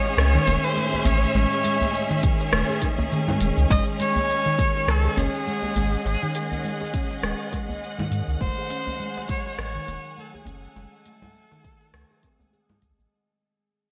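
This mystical, meditative organic downtempo piece opens at once with a rich, bowed kamancheh carrying the melody up front, its soft attack, vibrato and portamento trailed by digital delay and shimmer reverb. Beneath it, a dark, lush symphonic string section holds sustained chords with expressive vibrato and a smooth top, breathing with sidechain pumping and its own shimmer, while a close-miked handpan of nitrided steel rings out full, fingertip arpeggios through a delay. A crisp, produced drum kit of congas, hi-hat, rim click and shaker, dressed in gated reverb, joins almost immediately over lightly swung sixteenths. Alongside it come a soft-handed acoustic djembe kept dry and in the background, and a round, mellow sine sub bass that sits up front and pumps with the sidechain. A deep, layered electronic kick enters at 2.2 seconds, and from 3.7 seconds the music begins a long fade-out, all framed by a bright 1980s-style digital production with a moderate plate reverb.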